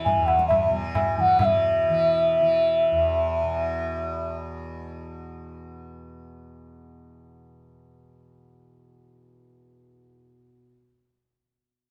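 Hindustani classical music, devotional and meditative at 136 BPM in 5/4, cut from a longer piece: an airy, hollow bamboo bansuri with vibrato and a crisp attack carries the melody up front between E5 and G#5 until 4.4 seconds, a low-tuned, saturated tabla with a short ring sounds briefly from 0.1 to 1.6 seconds, and a softly plucked, buzzing, shimmering tanpura drone holds beneath them to 10.6 seconds, all played live together in one room with light reverb.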